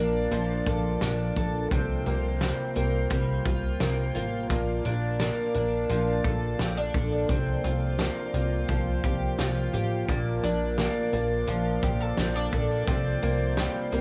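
A shimmering, octave-doubled twelve-string acoustic guitar with a woody, boxy tone sits up front, picking arpeggios through analog chorus and digital delay over a slow rotary-speaker tonewheel organ holding soft, flute-like chords, in this ethereal, dreamy dream pop excerpt cut from a longer piece. A plucky, punchy analog bass plays from the start, and a loose indie drum kit with a fat snare, gritty saturation and a rolled-off top enters at 0.3 seconds, as the harmony rocks between Bbmaj7 and C7sus4. At 7.8 seconds a glassy, drifting-overtones texture appears in the background, wrapped in chorus, reverb and delay, all within a small, lightly reverberant room.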